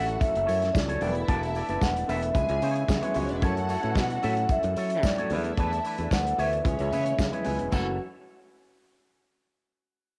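Glamorous and driving, this 112 BPM disco cut in F# minor rides on a tight, dark-cymbaled soul drum kit and a growly fingered electric bass up front, with a soft-mallet vibraphone carrying the melody in ringing, metallic tones over slow motor vibrato. Beneath it, a lush bowed string section plays a second line, a mellow grand piano with long sustain and a twangy envelope-filtered electric guitar add accompaniment, and a gritty overdriven tonewheel organ holds very quiet sustained chords through a slow rotary speaker. Distant congas and a jingly, close tambourine fill out the percussion in a small, lightly reverberant room, while the strings, piano, guitar and drums carry a cassette-tape character as the chords cycle through F#m7, E7sus4 and C#m7.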